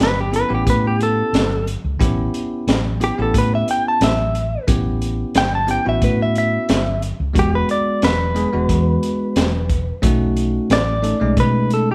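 Rollicking and gritty, this straight-eighth soul blues excerpt rides a slight sixteenth-note swing, with a clean, picked electric guitar recorded direct and compressed taking an up-front solo across the whole 11.9 seconds over chords moving from A9 to E9 and B9. Beneath it, a bell-like, bright tine electric piano supplies accompaniment, while a round, hollow-body short-scale bass played with the fingers sits dark and amped. A saturated breakbeat kit with a punchy kick, high-tuned snare, hi-hat and a rolled-off top pushes up front, and the band plays live together in one room with light reverb.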